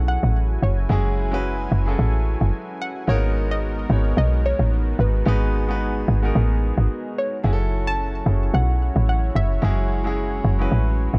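A dark, dry mix opens this short amapiano excerpt, a hypnotic and soulful groove at 110 BPM in F# dorian with a light 16th-note swing, moving from F#m9 to G#m9 at 3.1 seconds and back at 7.4 seconds. Up front, a punchy, woody log drum bass with a percussive, fast-attack, decaying FM bite carries the low end, while a polished baby grand piano plays the accompaniment and a smooth, detuned sawtooth pad with chorus holds sustained chords. Floating above, a soft, round pluck with a wave-folded, filtered tone, chorus and delay carries the melody.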